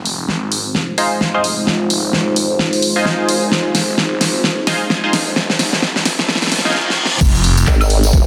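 A dense, heavily limited mix with a lush hall sheen opens on a gritty, swaggering bass house build in F minor at 130 BPM, swung on the sixteenths over a dark, moody analog pad holding a sustained Fm7 chord and a swirling, phased detuned saw bass murmuring in the background. A big-room dance kit with a huge snare, handclaps, hi-hat, woodblock and crash pushes up front through a drum fill, while nasal, band-passed chord stabs with chorus and tape echo flicker above, and a very quiet riser and reverse cymbal creep in from 2.9 seconds. At 7.2 seconds the drop lands with a knocking, tape-warm kick and jingly tambourine, and a wobbling formant-sweep bass surges forward at 7.7 seconds just before this excerpt is cut.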